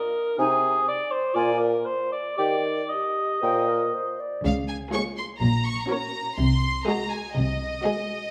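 With uneven, rubato beats at 120 BPM in 4/4, this spirited, lively passage from a quick classical-period symphonic movement opens in Eb major with a mellow, vibrato-tinged cor anglais up front, a mellow clarinet, an airy, distant silver flute and a present bassoon. At 4.4 s it shifts to Db major as the strings take over: a rich, close violin section carries the melody sul tasto above a second, floating violin line, dark violas, intimate cellos and pure double basses, heard inside a wet recital-hall reverb until 8.3 s.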